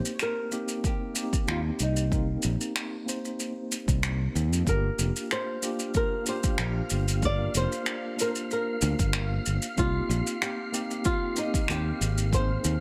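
A dark, boxy flamenco guitar melody with audible finger squeak and a mellow tine electric piano, both touched with digital delay, open this blissful, smooth sunset chillout excerpt at 94 BPM over Cm7, Gm7 and Abmaj9, joined by natural shaker and finger snaps, a deep layered electronic kick from 0.8 seconds, an up-front fretless electric bass from 1.5 seconds, and an airy, breathy wind-like tuned noise texture with its own reverb drifting in softly from 5.1 seconds, all set in a light studio reverb.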